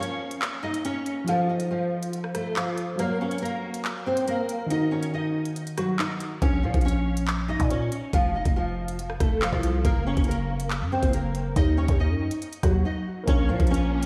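A fingerpicked nylon-string guitar carries the melody up front, its fresh strings blurred by ensemble chorus and a diffuse ambient delay, over a dark, boxy grand piano and a crisp, knocking drill kit of kick, hi-hat, rim clicks and handclaps in a half-time feel. At 6.4 seconds the piano drops out as a growling, buzzy 808 bass arrives up front, giving this dark, menacing drill cut a heavy low end. At 13.2 seconds the piano returns, and a moment later a lush bowed string section with vibrato and portamento sits in the background, all within a dreamy, reverb-soaked hall sound.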